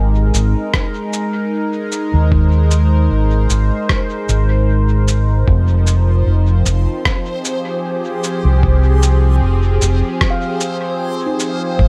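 Hazy and deep, this short excerpt of ambient dub moves at 76 BPM in F minor with a gentle swing, shifting from an Ab chord to Fm7 at 5.5 seconds. A dark, round fingered electric bass sits up front beneath a smooth, detuned sawtooth analog pad with chorus, while a muffled, thumpy pitched-down kick and a tape-softened cabasa and rim click carrying dub echo give the groove a small-room, sampler-style grit. A reversed, granular swelling texture drifts in at 6.4 seconds, and a ringing nitrided-steel handpan with tape echo adds meditative arpeggios from 10.3 seconds, all set in light digital ambience.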